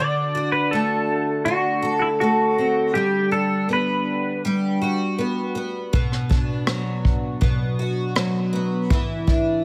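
Acoustic pop with a sunny, carefree mood in a straight 4/4, cut from a longer piece and set in a small room with light reverb. A double-tracked, picked twelve-string acoustic guitar rings bright and shimmering with octave doubling and a touch of finger squeak throughout, while a clean, twangy electric guitar carries the melody through an analog chorus until 4.4 seconds. A vintage brush drum kit enters at 5.9 seconds with a tight kick, rim clicks and a rolled-off top as the harmony moves from D7 through Gmaj7 and Bm to E7(no3).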